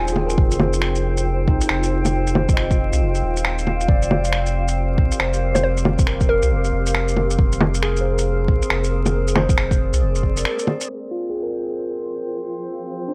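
Future garage with a ghostly, nocturnal mood and a swung feel, where a barky tine electric piano through a combo amp, gritty with vintage sampler crunch and tape echo, pumps under a filter sweep beside a blurred granular cloud pad, a drifting glass-harmonics texture and a round sine sub bass, while a hollow square pluck calls briefly at the start and again at 5.5 seconds over a deep layered kick and muffled, pitched-down shaker, bongos and finger snaps, all in dry, crackling digital ambience until a short break at 10.5 seconds opens onto a closing Fm passage where the pad is swept.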